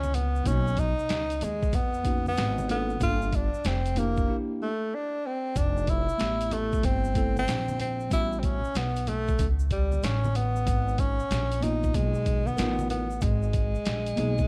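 Jazz-hop with a cool, mellow, swung feel at 94 BPM, this short cut from a longer piece sets a breathy, up-front tenor saxophone solo with vibrato and scooped notes over a woody, growly pizzicato upright bass, a gritty, pitched-down boom bap kit with a thumpy kick, a worn, slightly out-of-tune tine electric piano entering at 0.4 seconds, and ringing congas and egg shaker in the background, all in a dark small-room production with a break from 4.3 to 5.6 seconds and rich jazz chords such as Bmaj9, Fmaj9#11 and G#m69.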